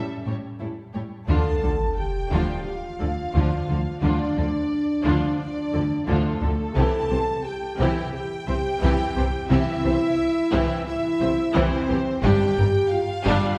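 A dark, heroic cinematic passage cut from a longer piece opens with two lush bowed violin sections, a soft-attacked, expressive melody in the background and a distant second line. Beneath them play close, focused violas and mellow, vintage-toned French horns holding sustained chords. Smooth cello bass joins at 0.3 seconds, and even, lightly vibrato double basses arrive at 1.3 seconds with a huge, dark sub drop impact that runs to 4.0 seconds, the ensemble heard from further back in a wet scoring-stage reverb.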